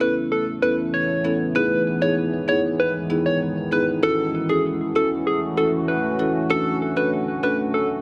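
A soft, round synth lead with a keys-like FM warble and chorus and delay carries the bouncy, summery melody up front over mellow, woody soft-mallet marimba and a deep, moody detuned pad with chorus and built-in reverb in this 8-second dancehall excerpt at 97 BPM in E major, moving through Aadd9, Emaj7, F#m7 and Dmaj7 within light digital ambience and a dense, heavily limited modern master.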